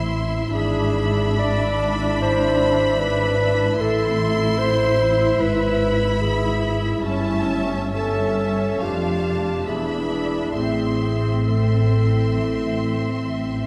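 A slow, solemn orchestral passage opens with the full ensemble sounding together, its rubato phrasing giving the music a yearning, romantic sway. A lush symphonic violin section carries the high melody with focused vibrato, while a second, closer-sounding violin section and a present solo clarinet with a warm classical tone weave supporting lines beneath it. Smooth, even violas fill the middle of the texture, and a ringing, fingerpicked concert harp spreads arpeggios across a broad span from the background. The cellos sit in the background on the bass line, and the expressive double basses reach down to the lowest register, giving the harmony a deep, rich foundation. The ensemble sits in a generous scoring-stage reverb. The clarinet drops out at 13.3 s, just before this excerpt of a longer movement ends at 13.7 s.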